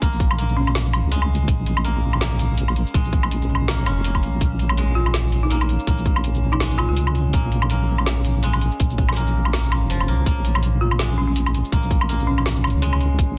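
A dark, heavy half-time drum and bass groove in Bb minor at 164 BPM opens with a bright, fingerpicked koto playing arpeggios through tape echo over a deep, wobbling, detuned bass with chorus, an up-front hard-clipped electronic kick, and a layered kit of woody snare, metallic hats, shaker and woodblock, all riding a swung sixteenth feel. An eerie, warbling FM drone on Db4 hangs in the background with chorus and its own reverb, while a rustic folk marimba with medium hard mallets adds brief echoed melodic phrases between Db4 and F4, first at 0.6 seconds and again at 5.0 and 10.8 seconds. The kick drops out from 9.5 to 10.3 seconds in this dense, heavily limited excerpt cut from a longer piece.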